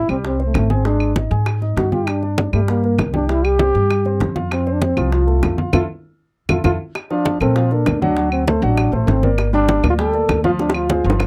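A straight, danceable Afro-Cuban jazz groove of ringing, low-tuned congas, tight high bongos and woody claves drives this sophisticated passage from a longer piece, where a dark, forceful trombone solo with light vibrato leads up front over pizzicato upright bass and a polished, long-sustaining upright piano, the band striking an accent at 5.7 s before a new section begins at 7.0 s, captured in a dry, close 1970s-style studio sound with light reverb.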